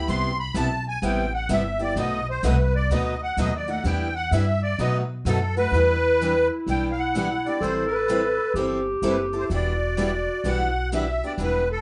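A swung 4/4 pulse at 127 BPM drives this virtuosic, bittersweet fragment of acoustic string swing in E minor, where the reedy, shimmering musette accordion sits up front and takes a solo through the first 5.7 seconds over a woody, thumpy pizzicato upright bass on gut strings and two picked steel-string acoustic guitars, one a boxy parlour with fresh strings and the other a bright concert guitar with finger squeak, before a dark, vintage clarinet enters at 5.7 seconds with light vibrato, subtone and scooped notes as the harmony moves from Cmaj7 and B7#9 into Em9 and Am9, all played live in one room with wet studio reverb.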